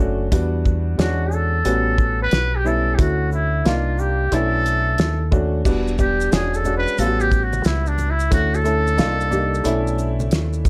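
A woody, slightly detuned upright piano and a deep, round fingered electric bass open this mellow, nocturnal jazz-hop excerpt, joined almost at once by a cloth-damped drum kit with a fat snare, tight kick, dark crash cymbal, hi-hat and shaker on a swung feel. A breathy, buzzy trumpet with a metal mute carries the melody from 1.0 seconds over rich seventh and extended chords, moving into a whispered, intimate solo at 5.7 seconds, where bright, dry maracas and congas enter low in the mix. Light reverb lends the whole cut a hazy, late-night air.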